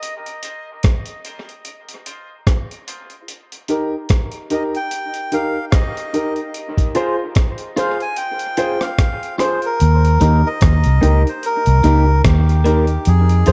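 A gritty, thumpy sampler-style breakbeat kit of kick, hi-hat and rim click opens this meditative, hypnotic dub reggae fragment at 74 BPM with a swung sixteenth feel, joined almost at once by boxy, long-sustaining concert grand piano stabs through a high-pass filter and dub echo, then a reedy, breathy melodica melody with dub echo at 4.5 seconds, a twangy, slightly broken-up picked electric guitar with phaser and dub echo at 7.0 seconds, and at 9.8 seconds a round, foam-muted vintage fingered bass sitting up front, moving between F minor and E-flat in a dark, warm mix with light digital reverb.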